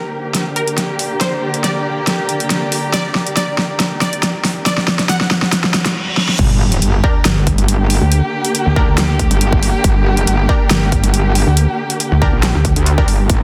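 Dense and heavily limited with light reverb, this heavy, menacing wobble dubstep excerpt moves with a half-time feel. It opens on a build-up where a bright, lush sawtooth pluck carries the melody through a phaser and dub echo, over a dark, distant chamber string section bowing sustained chords with vibrato, filtered and pumping. An airy, breathy pad sits in the background with chorus, while a very quiet riser, reverse cymbal and sub drop mark the approach, and an overdriven big-room drum kit with a huge, up-front snare fills toward the drop. At 6.4 seconds the drop hits with an impact as a punchy, overdriven electronic kick and a metallic, aggressive FM wobble bass arrive, joined by a heavy, detuned pulsing wobble bass that is saturated and mellow at once. Behind them, a bold orchestra-hit-like synth stab adds 12-bit sampler grit and dub echo, while the whole passage stays on G minor.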